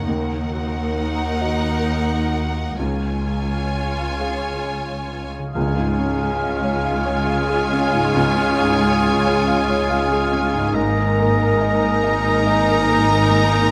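From the first moment, a rich, bowed violin section carries the melody in 6/8, shadowed by a second violin line, while a soft, felt-muted upright piano, smooth violas, a distant cello section, a clear double bass section, and a very quiet, ringing concert harp playing arpeggios fill out the accompaniment. The feel is rubato and cinematic, moving and uplifting, with the harmony shifting from Ebm to Db and settling on Absus2 near the close. At 5.5 seconds a warm, solo oboe and a dark, distant clarinet join with supporting lines, followed just after by an airy, hollow baroque flute and a mellow French horn section holding very quiet sustained chords. A soft, round timpani note sounds briefly from 5.6 to 6.8 seconds. The strings carry an expressive vibrato throughout, and the close, detailed microphones sit within a moderate concert hall reverb, giving this excerpt from a longer piece an intimate yet spacious glow.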